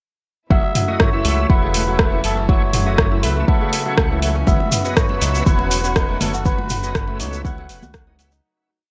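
A four-on-the-floor electronic kick and overdriven deep house kit drive this hypnotic afro house piece, where a round, dub-style analog bass and a ringing, fingerpicked kora sequence pump under an overdriven tonewheel organ's gritty chords with slow rotary swirl, a veiled, breathy cup-muted trumpet sings jazz-inflected hook phrases over a dark, distant chamber string pad, and grainy cabasa and interlocking congas join at 4.5 seconds before the bright 1980s-style digital mix fades from 5.8 seconds.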